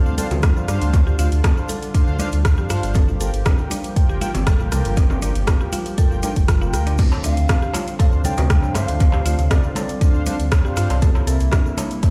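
A deep, rumbling detuned saw bass sits up front in this earthy, spiritual afro house excerpt, pumping under a deep layered kick while ringing congas, metallic hats with crash and rim click, and a grainy shaker in the background drive the groove. Overhead, a smooth, warbling analog pad, woody mallet-like pluck arpeggios and round brassy synth stabs, all chorused and sidechained, move from Dm7 to Gm7 and back before a closing C7. At 7.1 seconds a clay-shelled darbuka joins, and an airy bamboo bansuri with vibrato and delay sings briefly over the stone-room ambience of a big sound system.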